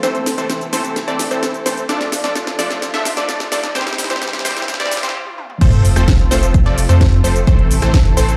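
A straight 4/4 pulse at 129 BPM drives this uplifting, triumphant slice of festival progressive house in F major, cut from a longer piece. The opening build-up runs under filter sweeps on both the detuned sawtooth supersaw stab riff and the background unison pluck arpeggios, while a house drum kit with a cracking snare and metallic hats plays a drum fill, and a very quiet electronic riser and sub drop sits beneath from 1.4 seconds. Dark, reedy strings with a gut-string tone and light vibrato hold sustained chords at a distance, and the stab, pluck and strings all pump against the sidechain, with delay trailing the stab and the pluck. After a brief stop, the drop lands at 5.6 seconds with an impact, bringing in a punchy, tape-warm kick up front and a deep, thick, saturated sub bass that reaches down to F1. The chords move from Am through Dm and C to F, returning to Am, and the whole mix carries a large studio reverb, like a big sound system heard in a bare room.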